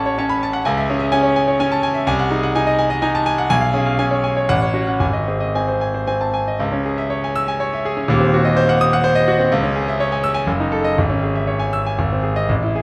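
A bright concert grand sits up front in a moderate concert hall reverb, its polished tone carrying deep bass beneath a brilliant treble. This passionate, stormy fragment of a classical virtuoso piano study is in C# minor and 3/4, flowing with rubato at roughly 112-128 BPM. The solo piano spans from Eb1 up to E6 across the full 12.8 seconds, its short sustain giving the notes a clipped edge within the hall's glow. The opening phrase moves through F#m/A, C#m and G#7/B# before settling onto G#. A new passage begins at 6.6 seconds, returning to C#m and threading through diminished chords over Eb and F# in the bass before closing on G#, cut from a longer piece.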